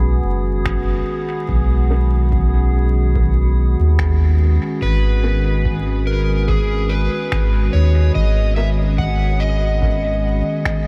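Deep and hazy, this ambient dub excerpt rests on a round, up-front sub bass with tube saturation beneath a warbling, nostalgic pad and glassy drifting harmonics, while a background electronic kick and muffled, pitched-down finger snaps with dub echo set a swung pulse from 0.7 seconds, a very quiet filtered chord stab flickers through, and an overdriven slide guitar enters at 4.8 seconds with echoing lines over a bed of vinyl crackle.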